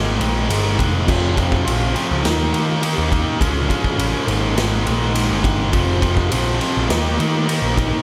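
A raw, lightly reverberant recording puts a garage drum kit up front in a bright stone room, its pumping ambience, punchy kick and medium-tuned snare coming through saturated and gritty with a rolled-off top. This brief cut from a longer quiet-loud alternative rock piece sits in F minor at 103 BPM in a straight 4/4, with instruments tuned to A4 = 444 Hz, and its mood is brooding yet cathartic. A tight distorted guitar, picked and prominent, drives the riff alongside a fuzz guitar that is compressed and set further back. Beneath them an overdriven picked electric bass adds a growly, amped low end. The harmony cycles through Absus2, Fm, Eb and Db, with the guitars and bass sounding from the start and the drums joining at 0.2 seconds.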